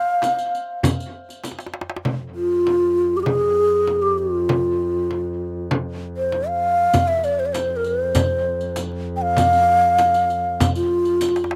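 A steady, straight 4/4 pulse at 98 BPM anchors this hypnotic, longing fragment of Persian modal ensemble music in F avaz esfahan, carried by a small, bright frame drum, a tight, close tombak played with hard hands, and a riq with dark jingles. Up front, a breathy, hollow low ney sings the melody with vibrato and tongued notes, its end-blown reed-cane tone touched by a slapback echo. A shimmering, hammered santur traces a second line at the start, also with slapback echo, and falls away by 1.8 s as a drum fill closes the opening. At 2.1 s a muted double bass enters, bowed con sordino to hold a dark, veiled drone on F with a soft attack. The riq and tombak drop out for a stretch and return at 6.9 s beneath the ney, and another drum fill arrives near the close, all set in light reverb with an open-air feel.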